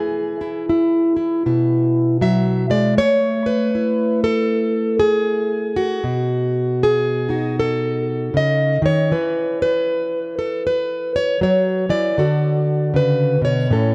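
Folk solo fingerstyle piece, hopeful and pastoral, carried by a fingerpicked plugged-in steel-string acoustic guitar with a full-bodied jumbo tone sitting up front in a dark production with light reverb, moving through a swung feel from Eadd9 to A, B7, E5 and D in this short cut from a longer piece.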